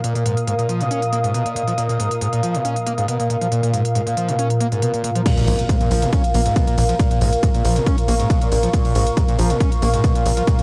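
A squelchy, resonant acid line screams with distortion, lush chorus and analog delay over a deep, moody pad that pumps up front, a swarming, warbling drone in the background and the smooth hats, crash and ride of an overdriven techno kit in this intense, hypnotic peak-time techno excerpt, until the drop at 5.3 s brings a very quiet electronic impact and a heavy, up-front kick, joined at 5.5 s by a tight, punchy sawtooth sequencer bass, all captured on a home cassette recording in a booth with moderate ambience.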